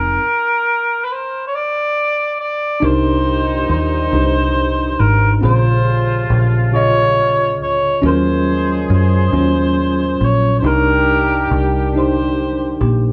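A slow, straight six-eight R&B pulse sets a late-night, yearning mood in this short cut from a longer piece. A deep, round, foam-muted fingered electric bass sits punchy and up front, while a worn, slightly out-of-tune tine electric piano supplies clean, direct accompaniment throughout. Over them a mellow cor anglais carries the melody in a classical solo style, with light vibrato and a distant, roomy placement touched by tape echo. At 2.8 seconds a tight horn section joins with warm, pop-style stabs in octave doubling, sitting low in the mix and also treated with tape echo. The harmony moves through Cm9, Bbm9 and Ebm9 before returning to Cm9, all framed by light reverb and a small-room ambience.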